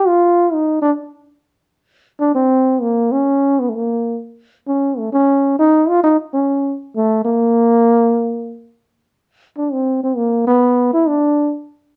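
A mellow trombone takes a playful, relaxed jazz solo up front in swung time, its smooth top colored by light vibrato and scooped notes, heard alone from 0.0 to 11.5 seconds in this dark, moderately reverberant club-toned cut from a longer piece.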